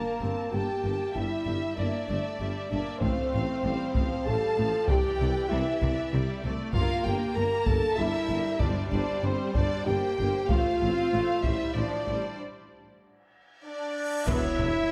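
A dark, huge impact opens this dramatic, heroic orchestral film cue in G dorian at 96 BPM in 3/4, where a mellow, distant French horn section holds sustained chords up front over lush bowed violins carrying the melody and a second line, an intense viola section in the background, and a low foundation of tuba, double basses and a very quiet cello section. Taiko drums struck with hard sticks enter at 3.0 seconds, a round timpani note sounds briefly around 8.6 seconds, and the harmony moves through Gm, F/A and Cadd9 before a break at 12.4 seconds with a drum fill and cymbal swell. Tight, vintage-toned trumpet stabs enter at 13.6 seconds, and a pure, bright flute note arrives on a final impact and Esus2 chord at 14.3 seconds, all set in a moderate scoring-stage reverb as the excerpt cuts off.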